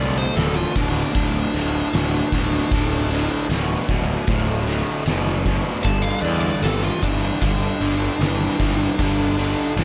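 A fuzz lead guitar, a double-tracked distorted rhythm guitar and an overdriven picked bass all start together at 0.0 seconds in this swaggering, raunchy excerpt of blues rock power trio and southern rock, tuned slightly flat to A4 = 438 Hz. An oversized, low-tuned acoustic drum kit arrives at 0.4 seconds with a punchy kick, a fat snare and dark ride cymbal, its gritty, saturated sound pumping in a bright stone room. The tempo is a slow, straight 77 BPM in 4/4, and the harmony sits on D5 before moving to G5 at 5.9 seconds. Over the low, bright guitar riff and the growly, up-front bass, the dark, fuzzy lead guitar solos throughout, ranging from D4 to A5. The mix is dry and close, with little reverb.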